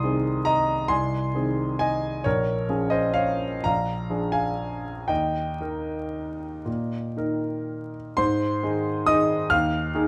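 A clear, intimate grand piano plays alone and up front in this graceful, elegant classical waltz fragment in Ab major, moving in a rubato 3/4 between 112 and 142 BPM through Ab/C, Bbm7, Bb7 and Eb before a new passage arrives on Ab at 8.2 seconds, its long sustain and audible action noise caught by close, detailed microphones within a moderate recital hall reverb, along with a layer of vinyl crackle.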